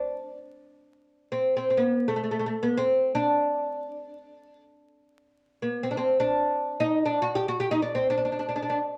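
A wet studio reverb and a layer of vinyl crackle frame this brief fragment of Turkish makam music, warm and stately in mood. A solo fretless oud sits up front, its woody, plectrum-plucked double strings moving between A3 and G4 until 8.8 seconds.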